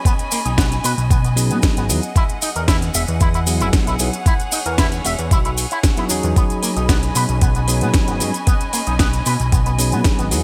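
A veiled, con sordino chamber violin section with sidechain pumping opens this feel-good, groovy nu-disco excerpt at 114 BPM in B major, joined almost at once by a twangy envelope-filtered guitar riff in lush chorus and delay, a gritty, overdriven kick up front, a house kit with cracking snare and metallic hats, and a cabasa in the background, then from 0.5 s a fat, detuned analog bass, and from 1.4 s a bell-like electric piano with pumping and delay, over B69 and Emaj9 chords in a bright 1980s-style digital production with light reverb.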